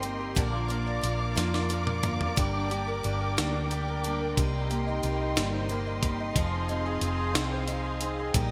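A tender, romantic six-eight pop ballad opens with everything at once: a clear, intimate grand piano with audible action noise and a lush chorus, veiled con sordino strings holding bowed chords with vibrato, and a bright picked acoustic guitar arpeggiating in the background through subtle chorus and digital delay. Underneath, a dark, round hollow-body electric bass sits up front beside a gritty, compressed sampler-style breakbeat kit with a thumpy kick and a high-tuned snare bathed in gated reverb, which plays a fill from 1.4 to 2.4 seconds. The chords move from Bb to Gm, Cm7 and Fm7 in a bright 1980s-style digital production with plate reverb, cut from a longer piece.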